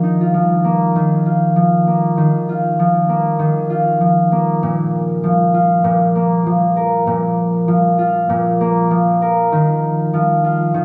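A solo concert harp, thumb-plucked and ringing, sits up front in this short folktronica fragment, its delicate, warm tone moving over a lightly swung sixteenth-note feel in 4/4. The harp opens on an Ebsus2 chord, shifts to a Bb5 for a new passage at 4.6 seconds, and returns to Ebsus2 at 9.5 seconds. A moderate recital-hall reverb lends the acoustic playing a gentle sense of space.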